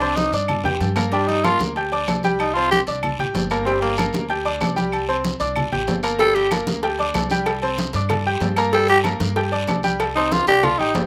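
Salsa with a danceable, driving mood, this passage from a longer piece is led by a tenor saxophone solo, gritty and growling with a light vibrato, placed up front with a slapback echo; it plays in phrases, dropping out after 4.0 seconds, slipping back in briefly at 6.2 seconds, and returning at 8.7 seconds. A brilliant grand piano with audible action noise sits close and present throughout, also touched by slapback echo, while a woody upright bass thumps out plucked gut-string lines underneath. The percussion is busy, with damped, thick-skinned congas, ringing metal-shelled agogo bells and timbales that sound compressed and saturated, a raspy guiro, and claves sitting in the background with their own slapback echo. A round, low-tuned cowbell enters very quietly at 6.2 seconds, and brief drum fills mark the opening and close. The harmony alternates between Csus2 and Gm, and the outdoor recording keeps the sound dry and immediate.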